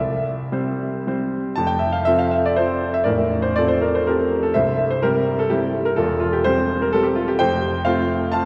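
Graceful and rustic, this brief romantic-era classical fragment is a triple-time dance in F major, moving at 124 BPM in 3/4 with dotted rhythms, uneven beats and a flexible rubato feel. A clear grand piano carries it alone from start to finish, spanning from A0 up to A5 with a smooth, vintage tone and short sustain, placed up front in the mix. The harmony opens on C, settles onto F at 1.6 seconds, and passes through F/A, C and C/E before returning to F at 7.4 seconds. A brief opening phrase gives way to a longer second passage that runs to the end at 8.5 seconds. Wet church reverb with a long 2.6-second decay surrounds the instrument, lending the lilting dance a spacious, resonant setting as it is cut from a longer piece.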